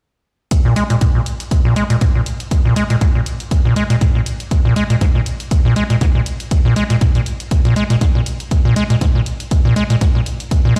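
Hypnotic and raw, this acid house excerpt runs at 120 BPM in 4/4 with a 16th-note swing of 55%, as a punchy analog kick sits up front beside a quieter analog hi-hat, both heard through a large room from 0.5 seconds. At 0.7 seconds a squelchy, hollow square-wave acid bass enters up front, its resonant filter sweep, fast attack and decaying notes pushed through overdrive and dub echo across a riff spanning Ab2 to Ab3. The whole groove booms from a big sound system in a bare stone room, lending a light, stony reverb.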